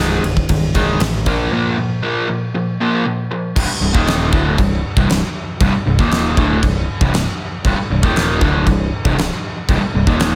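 A bright, double-tracked overdriven semi-hollow guitar riff and a dark, round, growling picked electric bass open this menacing, aggressive hard rock excerpt in C minor at 118 BPM, joined at 0.2 seconds by a huge arena drum kit with a fat snare and punchy kick, moving from Ab/C to Bb5 before a break at 1.5 seconds that gives way to a Cm section at 3.6 seconds, set in a small room with light reverb.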